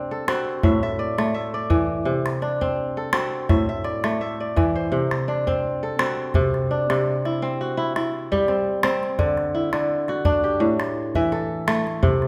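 A gently swung sixteenth-note lilt in 4/4 carries this joyful, warm fragment of West African traditional string and xylophone music, cut from a longer piece. The fingerpicked kora sits up front, spinning bright, ringing arpeggios that span from A2 up to E5 with a crisp edge. A small acoustic calabash joins at 0.3 s, adding percussion with its own small-room character beneath the kora. The opening passage circles between D7/C, A5 and Am chords, and at 6.3 s a new section moves through C and D before settling back on A5. A moderate recital-hall reverb gives the kora space to bloom.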